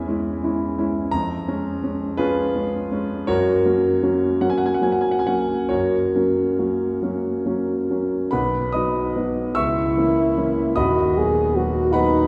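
In a rubato 6/8, this serene and tender romantic classical duo opens with a warm concert grand piano, full of deep bass and set up front, which is joined from 9.6 seconds by a clear French horn with light vibrato singing its melody, the whole excerpt bathed in the lush reverb of a concert hall.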